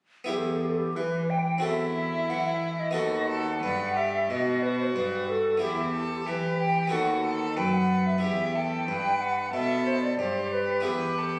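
Introspective and solemn, this baroque-style sonata movement with continuo, cut from a longer piece, sets an airy, hollow concert flute melody with vibrato and a crisp attack over a dry, round Italian-style harpsichord and a rich, focused bowed cello that sits up front. A clear, smooth violin joins with a second line at 1.6 seconds. The sound is that of a phone recording in a recital hall, bathed in wet reverb and compression.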